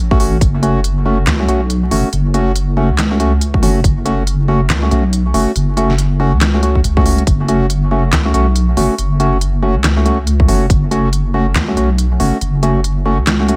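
A deep, soft wobble bass sits up front with a dark, detuned, compressed tone thickened by chorus, anchoring this meditative, heavy deep dubstep excerpt in a swung half-time feel over a single minor chord. Hollow, organ-like stabs with a ring-modulated edge and dub echo cut through alongside it, while a dubstep kit of deep snare, crisp hats and handclaps runs throughout and a punchy, tape-warm electronic kick lands in short hits, the first at 0.1 seconds. The dry mix is coated in vinyl crackle.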